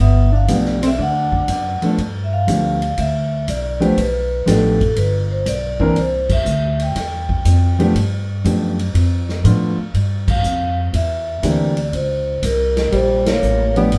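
Small-group swing-and-bop jazz at 121 BPM in a sophisticated, warm mood, where a ringing, motor-off vibraphone carries the melody over woody pizzicato upright bass sitting up front, an intimate grand piano comping with audible action noise from 0.5 seconds, and a big-room drum kit with dark cymbals and a punchy kick, while a breathy, whispered tenor saxophone with subtone and scooped notes adds a second line only at the opening and again from 12.9 seconds, with band accents at 6.2, 10.2 and 13.2 seconds in a wet studio reverb heard from further back in the room.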